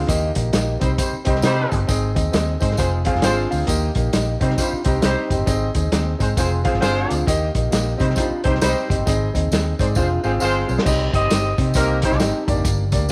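A swung eighth-note groove in 4/4 drives this uptempo 1960s-style soul excerpt, which is cut from a longer piece and feels joyful and uplifting. A lo-fi vintage drum kit, muffled and small-roomed with a tight kick, medium-tuned snare, hi-hat and crash, pushes the beat alongside a dark, round, foam-muted fingered electric bass and a jingly tambourine set back in a large room. An up-front, natural-sounding grand piano carries the accompaniment through a cycle of Eb, Cm, Ab and Fm, while a distant, roomy jazz-style horn section takes up a second line from 0.8 s. An electric guitar played through a small old amp, slightly broken-up, compressed and tucked into the background, sounds briefly at the very start and then brings in its riff at 2.8 s. A drum fill at 10.0 s leads into a new section at 10.9 s, where the harmony moves from Cm to Gm, all held together by light reverb and a small room ambience.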